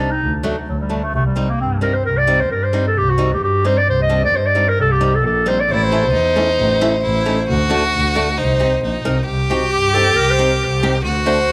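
Driven by a straight 2/4 pulse at 133 BPM that gradually speeds up, this bittersweet yet festive klezmer fragment in C dorian sharp 4 puts a mellow, roomy clarinet with tape echo out front on the melody over fingerpicked flamenco guitar, complete with finger squeak, and a dark, woody bowed double bass with vibrato; a focused, bright bowed violin joins with a second line at 5.7 seconds before the clarinet takes a solo from 9.3 seconds in a light studio reverb.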